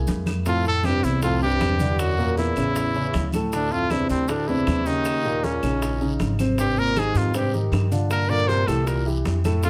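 Lightly reverberant and sophisticated, this danceable Afro-Cuban jazz passage in F major moves at 157 BPM in 4/4, cut from a longer piece. A clear, up-front trumpet carries the melody with vibrato from 0.5 seconds, joined by a smooth-topped baritone saxophone playing a subtone second line, while a dark concert grand piano with deep bass accompanies over thumpy, gut-string pizzicato upright bass. Behind them sit ringing congas, tight high-tuned cowbell and bongos, distant woody claves, a raspy dry guiro and grainy maracas, as the harmony travels through colorful chords such as Fmaj13, Gb7b13 and Abmaj7.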